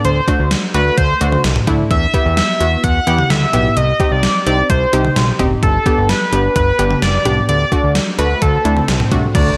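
Light reverb surrounds this wistful, bright synth-pop excerpt, where a bold, retro octave-doubled sawtooth lead with ring modulation, chorus and vibrato sits up front over a fat, detuned analog bass, a gated 80s digital drum machine with thumpy kick, overdriven gated-reverb snare, hi-hat, toms and crash, and a round, decaying analog pluck with chorus; a very quiet electronic swell and impact arrive from 8.4 seconds, with the impact at 9.3 seconds, where a warm, close-miked woodwind section enters with sustained chords.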